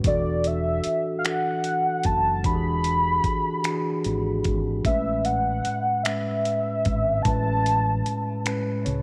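A velvety, detuned synth lead with chorus, vibrato and tape echo carries the melody from 0.1 to 8.4 seconds in this sensual, slow six-eight R&B excerpt, sitting up front over chords that move from E9sus4 to Amaj9 at 4.8 seconds. Beneath it, a clean, mellow tine electric piano with phaser supplies the accompaniment, a dark, round fretless electric bass with subtle chorus holds the low end, and a dusty, compressed sampler-style kit adds finger snaps, hi-hat and a thumpy kick with a gritty edge. Light reverb gives the whole blend a gentle sense of space.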